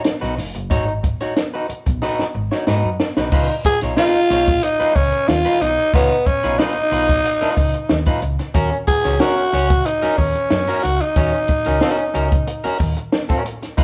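Funk at 92 BPM in a straight 4/4, this short cut from a longer piece has a sly, hypnotic mood, moving from G#m7 to C#9 and then D#m7. A compact cocktail drum kit sits up front from the start, dry and natural, with dark cymbals, a high-tuned snare and a punchy kick, and it plays a fill from 2.0 to 3.3 seconds that leads into the second section. Alongside it, an electric guitar at the edge of break-up supplies twangy, slightly broken-up accompaniment, while a hollow-body short-scale fingered bass enters at 0.2 seconds with a round, amped, dark tone. At 3.7 seconds a growling tenor saxophone takes the melody, raspy and breathy with light vibrato, gritty and present in a pop-style solo placed well forward. The band plays live in one room, wrapped in a moderate large studio reverb.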